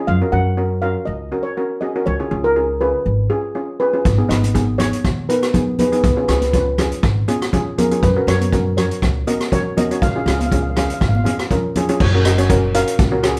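Calypso with a festive, bouncy lilt, this short cut opens with two shimmering steel pans, a soft, mellow one struck with soft rubber sticks in a boxy small room supporting a dark, smooth, up-front melody pan, over woody, bright pizzicato upright bass, before a street-band drum kit with dark cymbals and a boomy kick enters at 4.1 seconds and high-tuned, thin-skinned congas join at 4.4 seconds, all heard from further back in a reverberant room.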